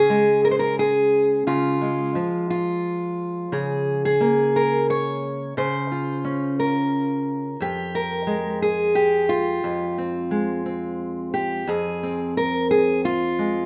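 This is a folk piece for solo fingerstyle acoustic guitar, an intimate and reflective fragment cut from a longer work. It moves at 88 BPM in a straight 3/4 and sits in F minor. A single fingerpicked steel-string acoustic guitar plays alone across its 13.7 seconds, ranging from F2 up to Db5. The guitar sits up front with a warm tone, and a finger squeak brings the listener close to the strings. The harmony rests on Db before shifting to Fmadd9 at 7.6 seconds, then a new passage settles onto Fm at 11.7 seconds. A moderate large-studio reverb gives the playing a gentle sense of space.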